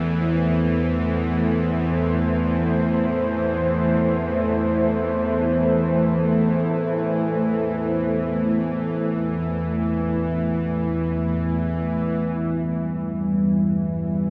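Dark and desolate, this free-time dark ambient drone is cut from a longer piece and unfolds in a single slow breath. A deep, full-bodied pad holds sustained chords from G3 to C5, its detuned sawtooth layers and sub octave softened by chorus and a slow attack into a moody haze. Beneath it, a tense, string-like bowed drone sits up front between E2 and E3, carrying vibrato, a grainy noise layer and the metallic edge of ring modulation. The harmony rests on A minor until 12.3 seconds, when it shifts to E minor and a very quiet bronze singing bowl rings on E5, its mellow tone showing slow beating and a boxy small-room character. A wet spring reverb with a 2.2-second decay wraps the whole sound in a cavernous, lingering tail.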